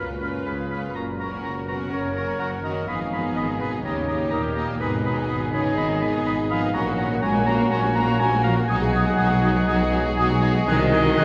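A mellow, soft-edged clarinet line stands out in this spirited, dramatic romantic orchestral excerpt in F# major, moving fast at 124 BPM with a rubato feel. Lush, vibrato-rich violins carry the melody with a second violin line beneath, while a clear oboe, an airy flute ensemble and a very quiet, even viola accompaniment fill out the texture. Distant, roomy French horns hold sustained chords and a clear trumpet adds stabs, while a mellow tuba, expressive cellos and woody double basses anchor the bass, all bathed in a cathedral-like reverb that makes the whole 11.2 seconds sound cheerful.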